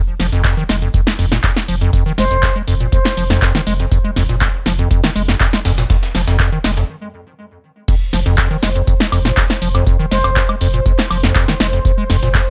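A squelchy, resonant square-wave acid bass riff opens this driving, hypnotic acid house track, its fast, decaying filter plucks trailed by tape echo, while a round sine sub bass pumps beneath it. From the very start a punchy analog drum machine sits up front with crash cymbal, handclaps, hi-hat, shaker, snare and woodblock, backed by a very quiet, gritty sampler-style breakbeat kit of hi-hat, high-tuned snare and tambourine, and a dry, deep electronic kick joins almost at once. At 2.2 s a distant, airy silver concert flute drifts in briefly, its crisp chiff and slightly unsteady straight tone carried on tape echo, and it returns for a brief moment near the end. After a short break, the drop lands at 7.9 s, and from 8.2 s a smooth, detuned sawtooth pad adds sustained chords that warble with chorus and pump with the sidechain. The mix is close and dry, with little reverb, and the passage is cut from a longer piece.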